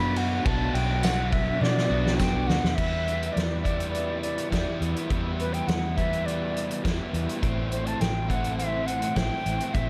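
Lightly reverberant small-room sound frames this melancholic, hazy shoegaze and dream pop excerpt at 103 BPM in E minor, where an airy, unsteady concert flute sings a vibrato melody through analog delay over a biting overdriven guitar riff bathed in lush chorus, a crunchy overdriven guitar trailing reverse reverb, a very quiet double-tracked semi-hollow guitar that drops out at 2.8 s, a dark, round, punchy foam-muted fingered bass, a loose, distant and roomy indie drum kit with dark cymbals, fat snare and tight kick that enters at 0.2 s and plays a fill into the shift from Bm to Em7, and a jingly, band-limited tambourine tucked in the background briefly from 1.0 s, before the harmony moves on to Am7.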